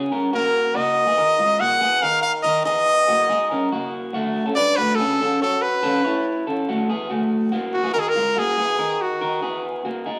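In a straight, breezy 4/4, this nostalgic indie pop fragment opens at 0.0 seconds with picked electric guitar arpeggios through a small old amp, their tone dark and slightly broken-up and bathed in spring reverb. A punchy, close-miked trumpet enters at 0.3 seconds and carries a pop-style solo melody with light vibrato, sitting up front beside the guitar until it drops out at 9.6 seconds, shortly after the music moves into a new section. The band sounds as if playing live together in a reverberant stone room, with a layer of vinyl crackle over the cut.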